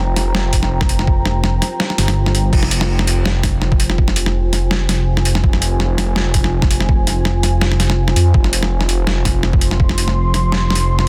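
A half-time drum and bass groove at 165 BPM in 4/4 with a light 16th-note swing sets a cinematic, spacious mood in F minor, built around a single Fmadd9 chord in this brief cut from a longer piece. An overdriven, pitched-down electronic kick lands thumpy and gritty from 0.5 seconds, dropping out between 1.8 and 2.5 seconds, while a compressed sampler-style kit with crash, hi-hat and a medium-tuned snare sits up front with its own overdrive. Underneath, a deep, rumbling detuned saw bass beats with saturation, and a moody analog pad holds slow-blooming sustained chords with chorus and sidechain pumping, all in a dry, dense, heavily limited modern mix.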